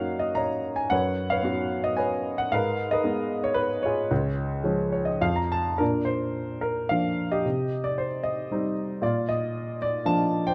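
A dark, warm production with light reverb places a worn, present baby grand piano up front. This brief excerpt of a classical piece for lyrical solo piano has a sunny, warm mood. It moves in 3/4 with a rubato feel, drifting between about 100 and 117 BPM, and the instrument is tuned to A4 = 439 Hz. The opening passage moves through F#6, Bsus2/F#, G#madd9 and C# before a short piano fill at 4.6 seconds. From 5.8 seconds the harmony settles into Bb major, moving from Bb to Cm and back to Bb. The piano covers a range from C#2 to A#5 and plays alone from start to finish at 10.5 seconds, a short fragment cut from a longer work.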